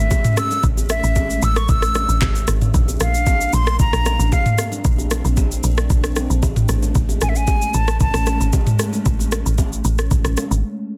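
Amapiano at 114 BPM with a warm, relaxed mood, cut from a longer piece, where a breathy, close-miked concert flute carries the melody with vibrato and tape echo over a hollow, detuned pad that pumps against the sidechain in the background, moving through Amaj7 and Bbmaj9. Up front, a woody, punchy log drum bass with a fast attack and decaying tail sits beside an overdriven electronic R&B kit of soft kick, handclaps, rim click, shaker and toms, while bright bongos and congas ring from a distant room. The flute drops out at 8.5 seconds, and the drums and log drum give way to a brief break at 10.6 seconds, leaving the pad to sustain until 11.0 seconds in a dense, heavily limited mix with little reverb.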